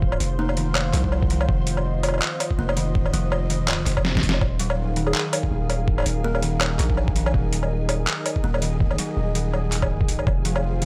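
Half-time drum and bass with a spacious, dark mood, cut from a longer piece and carried by a swung, half-time groove. A thumpy, overdriven electronic kick and an up-front, pitched-down sampler-style kit of snare, hi-hat, handclaps and woodblock share a gritty, compressed boom bap character, with a short drum fill at 4.0 seconds. Underneath, a deep sine 808-style bass sits up front with long, decaying notes, while a moody detuned sawtooth pad with a sub octave holds slow-attack chords, colored by chorus and sidechain pumping. A woody, buzzing kalimba plucks ringing arpeggios through tape echo from 0.4 seconds, and a round, warbling FM lead with a keys-like tone drifts in the background in brief phrases at 0.4 and 5.1 seconds, treated with chorus, tremolo and tape echo. A flickering granular texture with its own reverb hovers faintly behind it all, inside a dry, rough hardware-flavored sound with a digital ambience.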